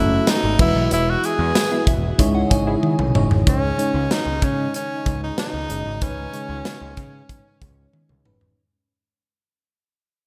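A straight 4/4 groove at 94 BPM drives this dramatic, nostalgic 1980s-style pop fragment in C# minor, with a punchy kick, medium-tuned snare and bright cymbals from a polished studio kit up front, entering at 0.3 s and soaked in gated reverb. A growling, overdriven picked bass sits low beneath a mellow FM electric piano colored by phaser, while a very quiet, organ-like ensemble string layer holds sustained chords underneath. Up front, a clear tenor saxophone carries the melody with vibrato and a touch of delay, moving through chords of F#m, Eadd9 and C#madd9. Between 1.7 and 2.9 s a nasal, funky polysynth adds dark stabs, and a soft, pure synth bell with chorus, phaser and delay traces a second line up high during band accents and a drum fill. From 3.5 s the harmony settles on C#sus2 as the whole piece fades out under a lush hall reverb and bright digital production.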